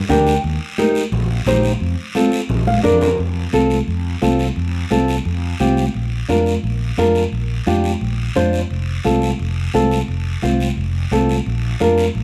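A dark, thumb-plucked flamenco guitar accompanies this joyful, danceable cumbia excerpt at 174 BPM, sitting up front beside a round, amped fretless electric bass, while ringing, high-tuned congas played with soft hands sound distantly in the background and a raspy guiro adds texture, with guitar fills near the start and again at 2.5 seconds, a drum fill at 2.7 seconds leading into a new section at 3.2 seconds, and light reverb over chords moving among Eb, F and Bb.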